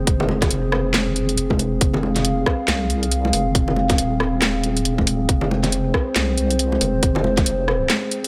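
Deep dubstep at 138 BPM in F minor, this short clip from a longer piece moves with a heavy, meditative half-time feel and a 60% swing on the sixteenths, resting on a single F minor chord throughout. A dark analog pad holds sustained chords from the start, its detuned, wave-folded tone softened by a slow attack, long release and lush chorus. Beneath it, a deep, soft wobble bass sits up front, saturated and compressed with a fast attack and a touch of chorus. A tight electronic kick and a garage kit with cracking snare, handclaps, rim click and warm hats arrive at 0.1 seconds, both layered and up front, with a small-room character. Bright, vintage congas and bongos sit in the background from 0.2 seconds, trailed by dub echo, while light digital ambience gives the whole clip a gentle sense of space.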